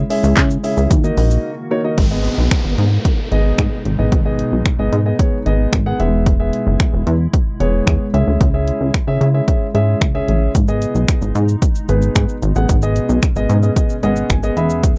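A punchy, tape-warm analog drum machine drives this energetic dance-pop excerpt at 112 BPM in G# minor, its kick, snare, handclaps, finger snaps, shaker and hi-hat sitting up front beside a plucky, funky analog bass that pumps with sidechain, while a dark, intimate grand piano with audible action noise adds accompaniment and a fill at 13.8 seconds, a glassy, ethereal FM pad with ensemble chorus holds sustained chords in the background, a downlifter sounds from 2.0 to 6.3 seconds, and a barely audible group handclap appears at 0.4 seconds, in a dry, close 1970s-style studio recording.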